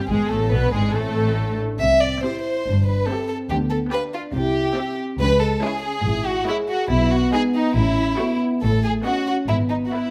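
Up front, a warm, softly bowed sul tasto second violin line colours this graceful, cheerful excerpt from a quick classical-period orchestral movement in a flexible rubato, while the rich first violins carry the melody in the background over dark, tight sustained French horn chords, bright focused viola accompaniment, and a smooth, even cello and double bass foundation, all captured closely and in detail with light reverb.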